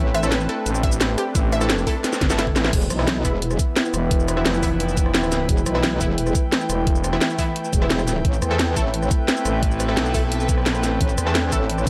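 A straight 4/4 pulse at 174 BPM drives this aggressive, tense excerpt of dark technical drum and bass in E minor, built on an overdriven, knocking electronic kick and an up-front kit of cracking snare, bright hats, rim clicks, shaker and crash, with a drum fill from 2.0 to 2.7 seconds. Down low, a metallic, saturated wobble bass sits alongside a thick, growling FM bass that enters at 0.7 seconds. In the background, a brief analog pluck arpeggio ends by 2.6 seconds, while bold, punchy orchestra-hit-like stabs echo over an evolving, detuned sawtooth pad and an airy, breathy texture pad, all moving through Am7 and Em under light reverb.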